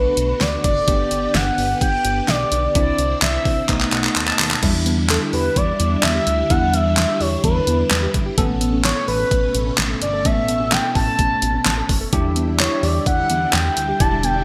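An up-front, smooth sawtooth synth lead with vibrato and chorus carries the melody over a knocking, overdriven pop drum kit with gated reverb, glossy pulse-wave synth bass, a bell-like tine electric piano, shimmering string-machine violins and, from 4.6 s, a warbly, dusty pluck arpeggio, in this driving, nocturnal 128 BPM synth-pop excerpt that opens on a Bm chord and settles into E dorian at 4.6 s, with bright 1980s-style digital production.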